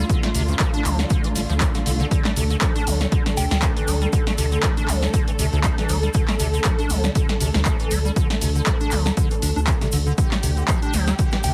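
Raw and hypnotic, this acid house excerpt moves at 119 BPM in 4/4 with a 16th-note swing, sitting in D minor on a D5 chord. A squelchy, hollow square-wave acid bass carries the riff, resonant and saturated with a filter sweep, and roughened by overdrive, ensemble chorus, 12-bit sampler grit and digital delay. Beneath it, a round, deep analog bass holds the low end, while a dark symphonic string section sustains lush, bowed chords with vibrato. Both basses and the strings pump against the sidechain. An up-front, tape-warmed electronic kick and a punchy analog drum machine with snare, handclaps and hi-hat drive the groove, and a grainy tube shaker sits in the background. A soft FM bell, treated with chorus, phaser and tape echo, chimes briefly at 3.4 seconds and again near the close, all within a light reverb and a heavily compressed, radio-like sound.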